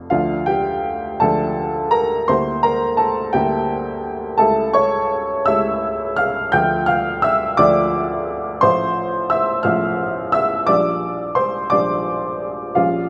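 A woody, slightly detuned upright piano sits up front in a moderate, stage-like reverb, its worn, vintage tone giving this short romantic character piece an intimate, lived-in color. Playing alone from the start at 0.0 s to the close at 13.1 s, the piano moves in 6/8 with a flexible, rubato feel that suits its warm, lyrical mood. The harmony unfolds in D minor, passing through Dm, Em7b5/D and A7/C# before returning to Dm and moving on to F/A and Gm7/Bb. The writing spans a broad range, from deep bass notes at A1 up to bright treble at G6, and the smooth touch lets the chords ring into the room's gentle tail. It is a brief excerpt cut from a longer piece.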